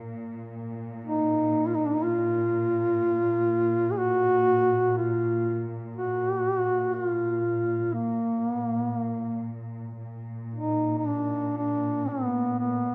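Mournful and full of longing, this short passage cut from a longer Caucasian folk lament moves at a slow, rubato 60 BPM in 4/4, tuned to A4 = 435 Hz. A muted string section, played con sordino, opens at 0.0 s with a low Bb2 drone, its bowed tone veiled and lush with a soft attack and vibrato. At 1.0 s a dark duduk enters as the solo voice, sitting up front well above the strings and singing a folk-style melody between Bb3 and Ab4. Its line carries light vibrato and scooped notes, with a smooth top to the sound. The piece shifts into a new section at 10.0 s, and both parts carry on until the close at 12.9 s, held in a moderate recital hall reverb that gives the lament a sense of space.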